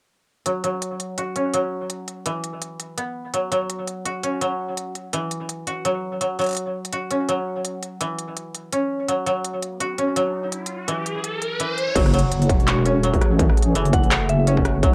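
A swung half-time groove at 167 BPM in 4/4 drives this spacious, cinematic drum and bass excerpt in F# minor, where woody, sampler-gritty koto arpeggios under a filter sweep sit up front over an overdriven industrial kit of crisp hats, handclaps, rim clicks and crash, until a riser and impact usher in the drop at 12.0 s with a deep, detuned wobble bass and a distorted electronic kick, joined at 12.5 s by a moody, pumping analog pad in the background and at 13.9 s by a brief, pure FM bell melody, all set in light reverb with a home-cassette character.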